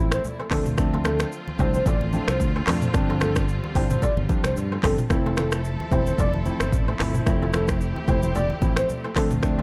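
A lightly swung 4/4 groove at 111 BPM drives this mellow, smooth afrobeats piece, with an up-front electronic drum kit of deep kick, smooth hats, finger snaps, handclaps, rim clicks, shaker and toms over a dark, punchy fingered electric bass and very quiet low-tuned congas. Soft, chorused electric-piano-like synth keys and a lush bowed string section hold the Fmaj7, Dm7 and G7sus4 chords, while a faint, fingerpicked kora riff rings in from 0.4 seconds. Above them, a full, octave-layered synth lead with a sub octave carries the melody from 0.1 seconds, colored by chorus, phaser and tape echo in a dry, echo-heavy mix.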